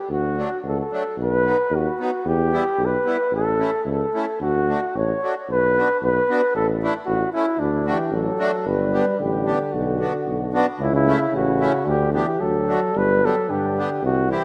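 Alpine folk dance-band excerpt, jolly and bouncy at 112 BPM in a rubato 2/4, where a mellow, up-front flugelhorn carries the melody with light vibrato and an analog delay over a present, warm tuba bass line and reedy accordion accompaniment with slow beating, before a smooth-topped euphonium second line joins at 7.9 s and the music moves from D major to G major at 8.7 s, all set in a lush hall reverb within a rough home-demo mix bearing lossy compression artefacts.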